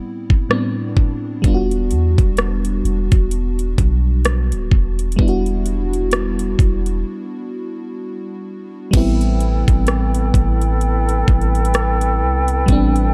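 Contemporary R&B with a late-night, longing mood, cut from a longer piece, opens on a lush, dreamy FM electric piano layered with a soft pad and treated with chorus. A trap kit with a knocking kick, metallic hats, rim clicks and crash soon joins it, and a deep, round 808-style bass sits up front from 1.4 seconds. After a break from 7.1 seconds, a breathy, mellow small flute group enters at 8.9 seconds with expressive vibrato on sustained chords, all in a dry, close sound.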